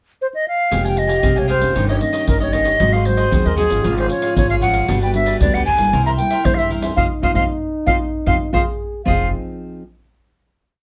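A breathy, up-front silver flute opens with a pickup at 0.2 s before, at 0.7 s, a nostalgic, yearning samba-choro in F minor at 115 BPM settles in, with a dark, whispered trombone counter-melody, crisp sixteenth-note cavaquinho strumming, thumb-plucked nylon-string guitar, woody pizzicato upright bass and deep surdo with pandeiro and shaker, all in light reverb, until a band accent from 7.0 s leads to the guitar ringing out on the final chord.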